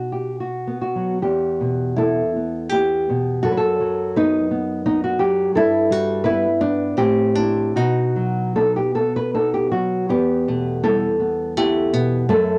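Elegiac and melancholic, this romantic duo for two nylon-string guitars drifts in rubato 3/4 time at roughly 72-87 BPM in E minor. One guitar carries the melody between G3 and G4 with a full-bodied, deep classical tone, fingerpicked and coloured by cassette tape. The second guitar supplies the accompaniment across a broader span from E2 to B4, thumb-plucked and up front, with a small body and audible finger squeak, sitting slightly louder than the melody. Both play together from the start to the end at 12.6 seconds, in a short fragment cut from a longer piece. The harmony opens on B before settling into E minor at 1.2 seconds, then moves through B/F#, Em/G, Am and back to B before resolving to E minor at 10.1 seconds. Light reverb and the intimate feel of a home cassette recording give the music a personal, keepsake quality.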